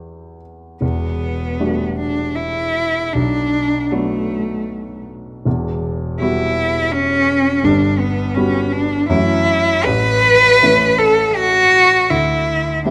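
Heard in a moderate recital-hall reverb, this hazy, mysterious impressionist classical duo in 3/4 with a rubato feel opens at 0.0 s on a warm, vintage-sounding grand piano with short sustain, up front in the accompaniment, joined at 0.8 s by a rich, focused bowed cello carrying the melody up front with vibrato and a smooth top, in a passage cut from a longer piece.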